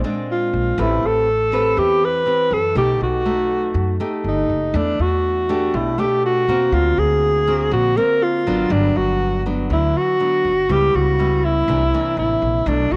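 A fingerpicked nylon-string guitar opens this romantic, breezy bossa nova in G major at 121 BPM, laying down classical-style accompaniment over rich jazz chords such as Am9, B7b13, Em11 and a D7alt that resolves to Gmaj7. Almost at once, at 0.3 seconds, a breathy alto saxophone takes the solo melody up front, its subtone delivery, vibrato, scooped notes and smooth top giving it a warm, intimate jazz voice. An upright bass joins at 0.5 seconds, plucked and placed up front, with a woody, thumpy steel-string tone anchoring the low end. The guitar and saxophone carry a cassette-tape character, and a moderate spring reverb gives the whole homespun recording a lived-in room sound. This 13-second fragment of a longer piece stays in one straight-feel section from start to finish.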